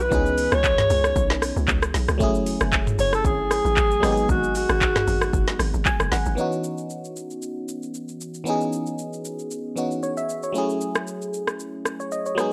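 A swung 115 BPM amapiano groove in C# minor, driven by an overdriven, up-front electronic drum kit of deep kick, woody snare, metallic hats, handclaps, rim clicks, shaker and toms, carries this hypnotic, late-night excerpt, as a breathy, distant alto saxophone with light vibrato and analog delay sings its melody until 5.6 s, a hollow, bouncy log drum bass pulses until 6.4 s, as a brief electric piano fill closes out, and the glassy, bell-like FM electric piano, coloured by chorus and phaser, plays the chords through to the end of this dry, gritty recording.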